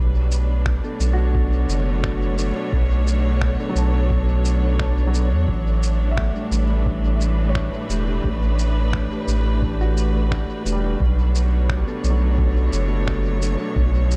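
A round, deep analog bass and a clear, bowed studio string section open together, the bass sitting up front with a dark, nasal tone while the strings hold sustained chords with focused vibrato. This meditative, spacious ambient dub excerpt moves at 87 BPM in a straight 4/4 in B minor, drifting from Bm7 to A7sus4 at 5.5 seconds and back to Bm7 at 11.0 seconds. A pitched-down, muffled electronic shaker and finger snaps arrive almost at once, overdriven and sent into dub echo, followed by a very quiet, thumpy kick drum that is compressed and overdriven. A soft, flute-like tonewheel organ plays stabs through a slow rotary speaker with dub echo, and from 1.1 seconds a felt-muted upright piano adds intimate arpeggios in the background, its action noise audible and its notes also trailing dub echo. The digital ambience leaves an echo-heavy mix.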